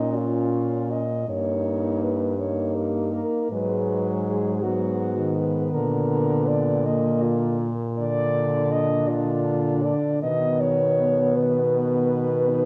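Elegiac and melancholic, this brief classical fragment for horn quartet moves in a slow, rubato 12/8 at about 53 BPM. A dark, up-front French horn with light vibrato carries the melody from F4 to Eb5. Beneath it, mellow horns supply a soft-attack second line in the background, a smooth-topped accompaniment with vibrato, and a punchy bass low in the register. The voices move through Bbm, Eb7/G, Abm7, Bb and finally B, framed by a scoring-stage reverb and the worn, warbling pitch drift of old cassette tape.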